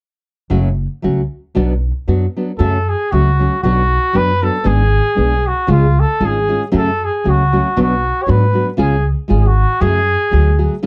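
A light reverb and the grain of cassette tape frame this short, dramatic fragment of Mexican mariachi folk music, set in F# minor at 116 BPM in a swung 2/4. From 0.5 seconds a fingerpicked nylon-string guitar, dark and classical in manner with audible finger squeaks, sets out the accompaniment alongside a woody, thumpy upright bass played pizzicato on gut strings, both sitting up front. At 2.6 seconds a mellow trumpet takes the solo melody in a classical style, punchy yet distant and roomy, carrying the passionate mood in its middle register. The harmony moves between F#m and Bm, passing through G#dim and C# before settling on a closing F#madd9.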